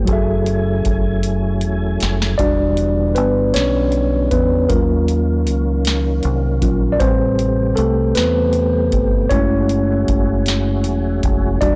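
A mellow tine electric piano sits up front in this late-night, yearning slow R&B excerpt in six-eight, moving from accompaniment into a solo at 2.4 seconds over minor-ninth chords. Beneath it, a tonewheel organ holds smooth sustained chords with key click, chorus vibrato and a slow rotary speaker, while a deep dub fingered bass adds a dark, round, saturated low end. A booming analog drum machine with a deep kick, crisp snare and metallic hats plays a fill from 1.2 seconds, all within a blown-out, overdriven recording bathed in digital ambience.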